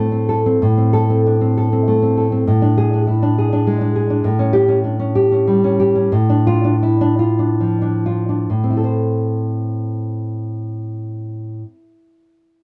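A solo nylon-string guitar sits up front in this short excerpt of a romantic classical piece, its thumb-plucked tone warm and acoustic. The mood is melancholic and intimate, set in A minor and in 3/4, with a rubato feel that moves between 63 and 104 BPM. The harmony travels from A minor through E7 over A, A7 and D minor over A before returning home to A minor at 8.5 seconds, where a new section begins. The playing slows between 3.4 and 8.5 seconds, easing into that arrival. Close, detailed microphones and light reverb give the guitar an immediate, personal presence.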